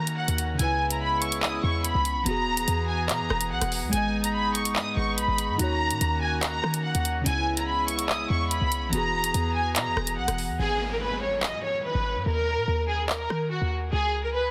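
A half-time drill groove at 144 BPM drives this tense, cold hip hop excerpt, with an up-front electronic kit of bright hi-hats, handclaps and rim clicks over a punchy, tight 808-style bass. A lush bowed violin section carries the melody with vibrato and portamento through a low-pass filter and tape echo, while glassy, airy digital keys with chorus and a warm woodwind section hold chords over a minor progression opening on Ebm7. At 10.6 seconds the keys and woodwinds drop out, the hi-hats fall silent, and an electronic downlifter enters under a dense, heavily limited master with light digital reverb.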